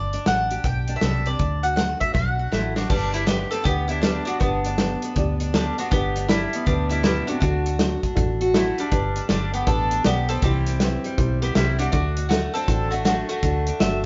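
A woody, double-strung mandolin carries the melody over bright dreadnought acoustic guitar, round foam-muted electric bass and a punchy, small-room country drum kit in this nostalgic, easygoing honky-tonk swing excerpt, where a drum fill at 2.1 seconds brings in a worn, slightly detuned upright piano in the background at 2.9 seconds, and a twangy pedal steel guitar touches a single high note at 13.8 seconds, all with light reverb and the feel of a band playing live in one room.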